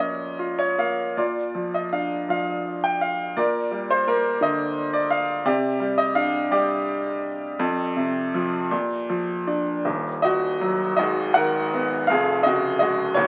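Dark and reflective, this brief cut from a longer classical piece features a lone baby grand piano, bright and brilliant with long sustain, played up front in a lyrical, rubato 6/8 at roughly 49-58 BPM in the dotted quarters, tuned to A4 = 445 Hz. The harmony settles into Bb major after a Bb minor opening, moving through Gm/Bb, Csus2 and Fsus2, then turns to Eb minor at 9.9 s with Abm7 and Db/F before the cut ends at 13.3 s. A moderate studio reverb surrounds the piano, and the sound carries the crackle and aged character of a very old 78 rpm record.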